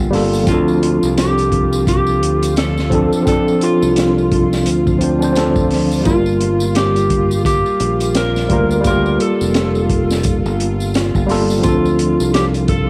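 A clean tine electric piano with harmonic tremolo opens this smoky, dark trip hop excerpt in G minor at 86 BPM alongside a growly fingered electric bass with tube saturation and a tense, string-like drone in the background, before a crunchy, rolled-off breakbeat kit with a punchy kick and high-tuned snare swings the 16ths from 0.1 seconds, a close, dry tambourine adds light percussion, and a slightly broken-up electric slide guitar with tape echo carries the melody from 0.5 seconds over Dm7 and Gm9 chords, all with the character of a lightly reverberant home cassette recording.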